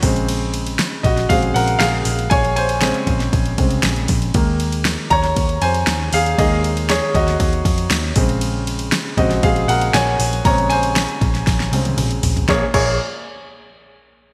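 A straight 118 BPM pulse in 4/4 drives this bittersweet, piano-driven pop excerpt in Bb minor, where a clear, polished baby grand takes a solo over Bbm7 and Ebsus4 chords, a dark, round, foam-muted picked electric bass holds the low end, and an up-front deep house drum kit with a deep kick, fat snare, metallic hats and gated reverb adds a fill from 11.5 to 12.5 seconds, all set in a lush hall with bright 1980s-style digital sheen.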